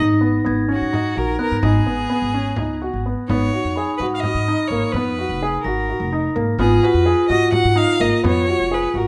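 A ringing vibraphone with medium hard mallets and its motor off, sounding boxy as if in a small room, opens this urgent, hypnotic passage of contemporary chamber music in 7/8, joined from the start by dark, short-sustained grand piano arpeggios, a woody, thumpy pizzicato upright bass and a soft, bell-like glockenspiel with rubber mallets tucked into the background. At 0.7 seconds a single bowed violin takes the melody with a rich, focused tone, vibrato and a smooth top, while a small, bright frame drum adds very quiet percussion. The glockenspiel drops out at 6.8 seconds, and the whole cut from a longer piece is captured with close, detailed microphones and light reverb.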